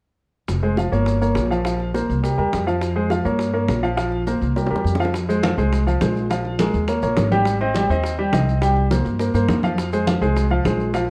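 Salsa excerpt at a fiery, danceable 207 BPM in F minor, where an up-front clear grand piano with audible action noise and a woody, thumpy pizzicato upright bass carry a Fm–Gm7b5–Bbsus2–C7 cycle over tight, high-tuned bongos and grainy maracas in the background, a drum fill at 4.6 seconds ushers in bright, damped congas at 5.1 seconds as the harmony moves through Eb7 and Abmaj7, and the whole mix sits in moderate studio reverb with the warbling pitch drift of worn cassette tape.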